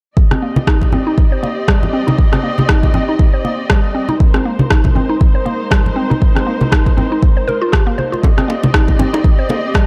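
A swung 4/4 groove at 119 BPM drives this spiritual afro house cut in C minor, built on a deep, up-front electronic kick, a tape-colored rim click, bright close congas played with soft hands, and tight, high-tuned bongos that slip in at 8.2 seconds in the background. Over it, a woody, warbling FM synth pluck spins arpeggios through chorus, delay and a filter sweep, while a lush bowed string section holds sustained chords; both parts carry sidechain pumping as the harmony moves from Cm7 to Ab and back. The production is dark, with light reverb.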